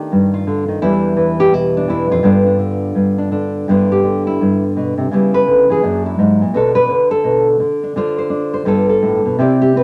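A dark, full-bodied nylon-string guitar, fingerpicked with a deep classical tone and placed up front in a studio ambience with a short reverb, carries this swinging, sophisticated solo jazz fragment alone, moving with a loose rubato swing through a rootless B7#9b13, Em7 and G7 before its solo passage from 3.7 seconds winds through C#m7b5, F#7b13 and Bm7 to settle on Dm7 and G9.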